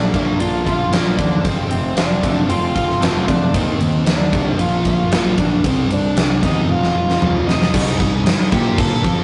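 A dark, smooth overdriven lead guitar carries the melody over a twangy, phaser-washed twelve-string electric arpeggio, a thick, double-tracked fuzz riff and a growling, overdriven fingered bass, with a huge arena drum kit crashing in almost at once, fat snare and punchy kick up front. In this angsty, dark fragment of quiet-loud alternative rock, the twelve-string drops out at 3.5 seconds, leaving the fuzz and bass to churn beneath the lead. A drum fill at 6.7 seconds leads into a new section at 7.7 seconds, all captured with light reverb and the rough saturation of a rehearsal-room recording.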